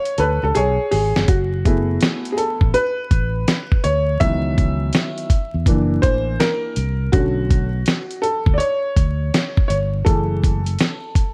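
Vinyl crackle and light reverb frame this mellow, smoky jazz-hop fragment in F# minor, moving at 82 BPM with a swung sixteenth-note feel. A dark, worn baby grand piano sits up front with audible action noise and a boxy, intimate tone, taking a solo throughout, while a gritty, compressed sampler-style drum kit opens with a fill in the first 1.3 seconds before settling in with a thumpy kick, fat snare and hi-hat. Underneath, a bright, punchy fretless electric bass enters at 0.2 seconds as the harmony moves through chords like F#m11, C#m11 and Bm9.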